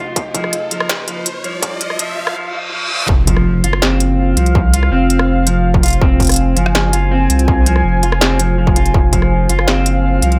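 Set in a light digital ambience, this dark, spacious half-time drum and bass excerpt at 164 BPM in F phrygian opens with a build-up of riser, filter sweep and reverse cymbal over a deep, detuned sawtooth pad pumping with sidechain and chorus, a slightly broken-up fingered electric guitar playing arpeggios through tape echo, and a thick saturated sub bass, before a distorted electronic kick and an up-front industrial kit of clanging snare, rim click and smooth hi-hats, entering at 0.2 seconds, drive the drop that lands with an impact at 3.1 seconds.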